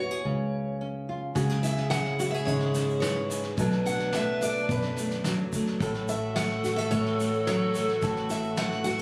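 A straight 4/4 pulse at 108 BPM carries this melancholic, reflective acoustic folk piece for a small band, cut from a longer work. It opens with three strings alone: a picked steel-string acoustic guitar with fresh strings carrying the melody high up, an up-front, deep classical nylon-string guitar fingerpicking the accompaniment, and a round, foam-muted fingered electric bass reaching down to E1, all over a C# chord. At 1.4 seconds the fuller passage begins on C#m, moving through Bm7 to F#m7/A. Here a breathy, hollow bamboo pan flute adds a second line with tongued chiff and a straight tone, while a chamber string section sits in the background, bowing soft-attack sul tasto chords with light vibrato. A brush drum kit enters with a fat snare and tight kick, and a grainy, bright tube shaker sounds distant and faint. The moderate studio ambience and club reverb surround the phone-in-the-room recording.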